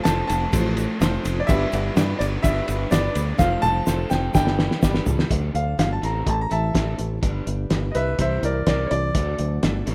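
A bright concert grand piano carries the melody from the start of this jangly folk rock and heartland rock excerpt at 125 BPM in G mixolydian, over a woody upright piano, a full-bodied picked steel-string acoustic guitar and a crunchy, double-tracked overdriven guitar riff in the background. A growly fingered electric bass and a muffled, cloth-damped drum kit with a fat snare sit up front, joined by a grainy egg shaker, and after a drum fill from 3.4 seconds the upright piano and shaker stop at 5.2 seconds. The grand piano then takes a solo over D, Am, G and C in a rough home demo mix with light reverb and small-room ambience.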